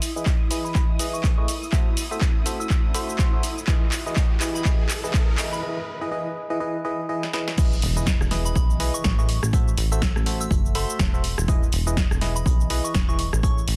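A silky string pad with ensemble chorus opens this uplifting, joyful piano house excerpt at 123 BPM in E major, alongside a punchy, tape-toned analog drum machine, quiet brushed jazz kit, biting FM electric piano riff and soft, pure synth bell melody, both filter-swept through the build-up as a riser climbs, until after a break the drop arrives at 7.6 seconds with an impact, and a plucky, funky analog bass soon follows, pumping beneath the up-front kick.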